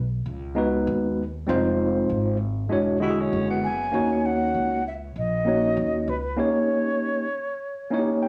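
A worn, slightly out-of-tune tine electric piano sits up front through most of this cool jazz-hop fragment, its lightly overdriven tone colored by cassette tape and heard through built-in speakers as it moves through G#m7, Fm7, E13, D#m7 and D#7, closing with a short fill. Beneath it, a pizzicato upright bass on gut strings gives a woody, thumpy pulse at 98 BPM in 4/4, with a swung sixteenth-note feel. At 3.0 seconds a growling tenor saxophone slips in briefly as a second line, raspy and gritty with a subtone, scooped notes, vibrato and a soft attack, treated with cassette tape and analog delay. A breathy concert flute takes the melody from 3.6 seconds, up front and expressive, with vibrato, a crisp attack and rolled-off highs, colored by cassette tape. The whole has the mellow, homespun sound of a cassette home recording, touched with light studio reverb.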